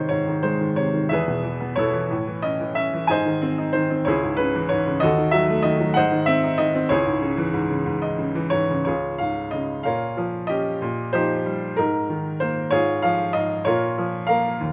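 In a 6/8 with flexible, rubato timing, this lyrical solo piano passage from a longer classical piece feels peaceful and calm. A single baby grand carries everything from its low bass up into the upper treble, its tone brilliant and open, captured by close, detailed microphones that place it up front within a moderate recital hall reverb. Around 8.9 seconds the harmony turns from a minor mood toward a brighter, more luminous colour, and the passage continues in that light until it breaks off at 14.7 seconds.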